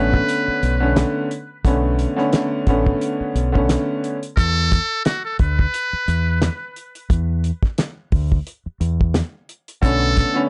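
Boom-bap hip-hop with a tough, gritty swing, this cut from a longer piece rides a loose sixteenth-note shuffle in 4/4. A muted trumpet carries the jazz-style solo melody from start to finish, its buzzy, thin tone softened by a gentle attack and light vibrato, with an analog delay on its line. A vintage-sounding grand piano lays down smooth chords beneath it, drops out at 4.2 seconds and returns at 9.8 seconds as the harmony moves from Bm9 to an E-based seventh chord and back to Bm9. A deep, round dub bass played with the fingers sits up front with a touch of transformer saturation, and a cloth-damped, thuddy drum kit adds a fat snare, a tight kick and hi-hat. The sound is dry and gritty with a light reverb and a rolled-off top end, giving the whole groove a hardware-recorded grit.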